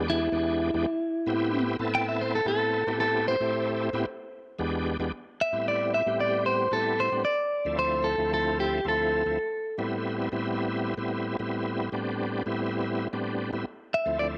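A clean, picked electric guitar opens this mournful, soulful minor blues in 4/4, taking a solo over the first 5.1 seconds above an E7#9 that resolves to Am9. Beneath it, a full, shouting tonewheel organ fills out the accompaniment, lightly overdriven and colored by chorus vibrato, audible key click and a slow-turning rotary speaker. The guitar's tone is warm and compressed, sitting up front in the mix beside the organ, which is brighter and somewhat quieter. From 5.1 seconds the harmony moves between Am9 and Dm9 as both parts carry on, with a gentle swing easing the sixteenth-note feel. A moderate spring reverb with a digital ambience gives the sound a lingering tail, and the passage is cut from a longer piece, ending at 14.4 seconds on a Dm9.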